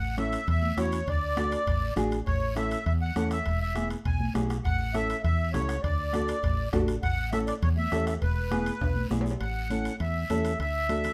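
A moderate studio reverb gives this short cumbia excerpt a sunny, joyful glow. Up front, a reedy, sweet accordion carries the melody with a light tremolo tuning, set against a dark, round fretless electric bass with a woody, hollow-body character. A bright, full-bodied nylon-string guitar supplies fingerpicked classical accompaniment as the harmony moves among A, D and E. In the background, soft-beater bombo, thin-skinned high-tuned congas played with soft hands, and ringing metal-shell timbales drive the straight groove, while a raspy, saturated guiro scrapes along at a low level. A drum fill at 8.8 seconds leads into a return of the opening section, and the bombo drops out at 9.3 seconds while the rest of the band carries on.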